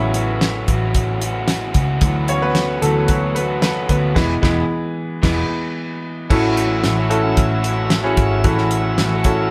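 A clear, intimate baby grand piano opens this uplifting, hopeful piano-driven pop excerpt, its action noise audible, alongside a raw, overdriven garage guitar riff that is picked and double-tracked, and a dark, round, foam-muted electric bass. A damped 70s drum kit sits up front in a straight 4/4 at 112 BPM, with a fat snare, tight kick, hi-hat and crash cymbal, all dry and rolled off at the top. The piano takes a solo over the first 6.3 seconds as the harmony moves through A6, D6 and E in A major, and the band hits an accent from 4.2 seconds. At 6.3 seconds the music returns to A6 and a new section begins. There, a bright, reedy tonewheel organ enters with sustained chords in a high register, lightly overdriven, with key click and a slow rotary speaker. The band sounds as though it is playing live in one room, with a light reverb.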